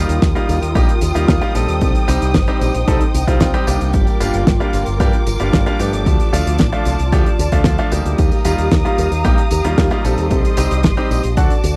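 A dry, close 1970s-style studio sound frames this melodramatic, nostalgic italo disco clip at 113 BPM, where lush bowed strings hold vibrato-rich chords over Ebadd9, Cm, Gm7 and Dm, a brilliant grand piano with audible action noise punches out stabs through tape echo, a fingered electric bass runs warm and direct through an envelope filter, and a damped 70s kit with a fat snare, hi-hat and tambourine sits in small-room ambience beside a punchy, tape-warm analog electronic kick.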